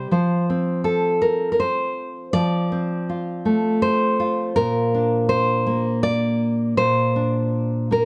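Lightly reverberant and warm, this short pastoral folk fragment, cut from a longer piece, features a solo fingerpicked nylon-string guitar with fresh strings and a deep classical tone, placed up front and ranging from Bb2 to D5, moving from F to Bb at 4.6 seconds in a straight 3/4 at 81 BPM in F major, tuned to A4 = 439 Hz.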